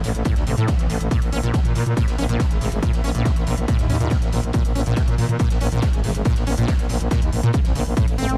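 Lightly reverberant and industrial, this driving slice of peak-time techno is built on an up-front, overdriven electronic kick drum that enters at 0.3 s, with overdriven electronic hi-hats and a dark, gritty, low-tuned acoustic kit in the background whose fat snare and hats sit in a bright stone room. A growling, thick FM bass pumps against the kick, while a squelchy, resonant sawtooth acid bass plays a riff through chorus and delay. Beneath it all, a very quiet swarming drone warbles and evolves with a tense, vintage, granular shimmer.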